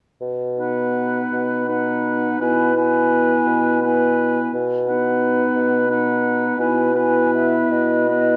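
A mellow, soft-attacked bassoon sits up front, holding a low B from 0.2 s before the rest of the wind quintet joins at 0.6 s in this slow, serene romantic movement in B major, swaying in a rubato 6/8 at about 48-59 BPM over chords alternating between B and E/B. An airy, expressive flute with vibrato carries the melody from a distance, while a clear oboe with light vibrato adds a present second line, a clear clarinet plays accompaniment in the background, and a warm French horn with light vibrato fills out the middle. The sound is bathed in a wet recital hall reverb and a worn, warbling cassette-tape patina with drifting pitch, and the passage is cut from a longer piece.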